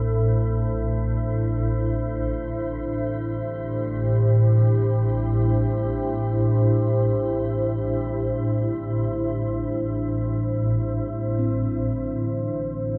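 This dark ambient drone piece drifts in free time in A minor, tuned to A4 = 444 Hz, with a desolate, unsettling mood. A swarming drone sits up front in the low register, tense and warbling, its detuned unison sine tones granular and evolving, with a moving notch and a bright edge. Above it, a deep, moody pad holds sustained chords with slow attacks and long releases, its sawtooth and sine layers thickened by a sub octave and chorus for a vintage, shadowy color. In the background, a bronze singing bowl struck with a suede striker rings with a metallic, meditative tone and slow beating. The sound sits in a cathedral reverb with a 7.1-second tail and a warm-toned production, and the music moves into a new section at 11.4 seconds in this brief excerpt from a longer piece.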